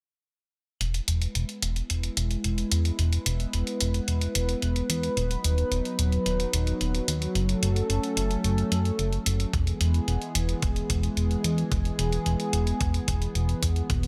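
A fat, saturated analog bass sits up front in this uplifting, nostalgic synthwave excerpt, its detuned sawtooth and wave-folded tones carrying a plucky, fast attack through a filter sweep. Above it, a shimmering, chorused pulse-width pad holds sustained chords with a slow attack and a sidechain pumping motion, also moving under a filter sweep. At 110 BPM in a straight 4/4 and E major, the harmony moves from E to B/D# at 5.2 s, then F#m, before returning to E at 9.5 s. A tape-warm, sampler-style electronic hi-hat runs throughout, and a thumpy electronic kick drum, re-recorded in a large room, joins at 9.5 s. A moderate plate reverb and bright 1980s-style digital production give the whole a glossy retro sheen.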